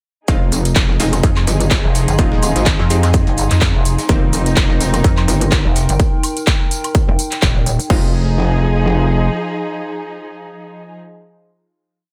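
Over a punchy, overdriven four-on-the-floor kick, a house kit of metallic hats, claps, tambourine, woodblock and crash joins a very quiet, gritty sampler-style breakbeat to drive this swaggering, bouncy bass house drop, where an aggressive FM wobble bass and a detuned pulsing pluck bass that answers it sit up front beneath veiled con sordino strings, sparse echoing orchestra-hit-like sawtooth stabs, and a warbling lo-fi tape pad that lingers last until 11.2 seconds.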